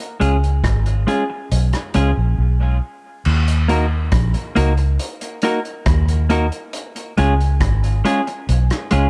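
A round, foam-muted fingered electric bass sits up front in this meditative, spacious dub reggae excerpt at 69 BPM in Eb minor, moving from Db to Ebm and back to Db. A clean, scooped semi-hollow electric guitar with a hollow-body tone, high-pass filtered and soaked in dub echo, supplies the accompaniment. A smooth vintage drum kit with punchy kick, rim click, hi-hat and dark crash cymbal plays alongside them from the start, with a break at 2.4 seconds before the second section arrives at 3.3 seconds, all set in light reverb and small room ambience for a warm production.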